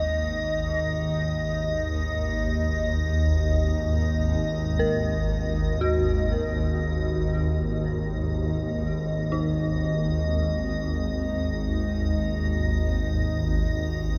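Drenched in vast, cavernous reverb, this dark ambient drone sets a swarming, wave-folded synth drone up front under a filter sweep, while a bright, crystalline glass pad hovers high above and an eerie, inharmonic FM synth bell traces arpeggios in the background with chorus, tremolo and diffuse delay, both the pad and the bell fading out across the 14.2 seconds.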